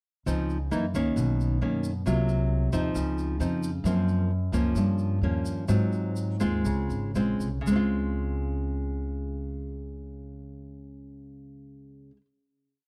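A dry, close 1970s-style studio sound frames this short, breezy and sophisticated bossa nova piece, in which an up-front, fingerpicked nylon-string guitar with old strings plays thumb bass under syncopated plucked chords, a woody pizzicato upright bass plays dotted root-and-fifth lines beneath it, and a grainy, mellow tube shaker sits faintly behind until 7.8 seconds, as the music slows from 3.9 seconds into a final chord at 7.7 seconds.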